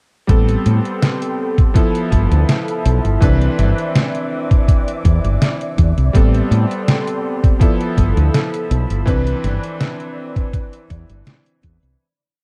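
At 0.3 seconds this short vaporwave piece opens straight into its groove at 82 BPM in 4/4 with a straight feel. The electronic kick drum sits up front with a thumpy, tape-warm thud, and the detuned 8-bit drum machine adds a medium-tuned snare and closed hi-hat in a slowed pop beat. A woody fretless electric bass, round, punchy and hollow-bodied, plays a syncopated riff low in register and up front in the mix, while a clear electric grand piano holds drop-2 chords with syncopated pushes, its chorused unisons roughened by vintage 12-bit sampler grit and trailed by analog delay. Behind them a soft string machine spreads a silky, mellow pad with a slow attack and long release, shaded by phaser and ensemble chorus. The chords cycle through Am9, G13 and Cmaj9 in C major, tuned slightly flat to A4 = 438 Hz, and the dark, warm, dry production gives the faded, nostalgic mood a close feel until the fade-out from 8.1 to 12.0 seconds.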